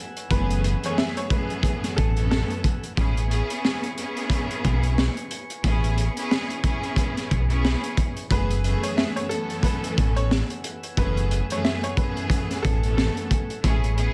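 This recording carries a light reverb over a tough, moody slice of boom-bap hip-hop with a swung sixteenth-note feel, cut from a longer piece. Up front, a crunchy breakbeat kit sounds saturated and gritty, its high-tuned snare and tight kick softened by a rolled-off top. A deep, round dub bass, fingered and played direct and amped, sits just as close. A warm studio string section carries the accompaniment with vibrato and portamento, colored by cassette tape, while a mellow tonewheel organ, with audible key click, holds flute-like sustained chords through a slow rotary speaker in the background. A bright, woody upright piano, worn and slightly detuned, plays the melody through delay and plate reverb, entering at 0.3 seconds and returning at 8.3 seconds as the harmony moves from F#m11 to Amaj9 and back.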